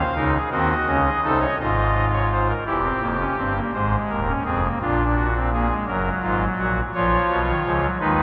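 This classical fragment is a baroque-style four-part fugue for solo pipe organ, lifted from a longer piece, with a driving yet solemn character in a straight 6/8 metre. The organ speaks through a soft reed oboe stop with a romantic voicing and tremulant, placed up front and spanning from D#1 up to E#5. A cathedral reverb with a 4.2-second decay gives the sound a drenched, cavernous halo. The opening passage moves from a D#7 chord with its third omitted over C# through Cdim7 to C#/G#, and at 2.7 s a second passage begins on C7/E and moves through Fm and A#7. It reaches a lush F#maj9 before settling on A#m as the 8.2-second fragment ends.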